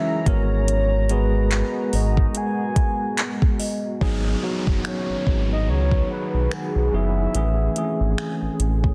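Sensual and longing, this contemporary R&B excerpt features a round, octave-layered synth lead carrying the melody through chorus, phaser and delay over a clean tine electric piano, a deep, detuned ambient pad and a delicate, bell-like celesta that stops at 4.4 seconds, while a smooth sawtooth synth bass and an up-front electronic drum kit of finger snaps, handclaps, metallic hi-hat and soft kick, with clipping on the snare, enter at 0.3 seconds, and a downlifter arrives at 4.0 seconds within a dense, heavily limited master.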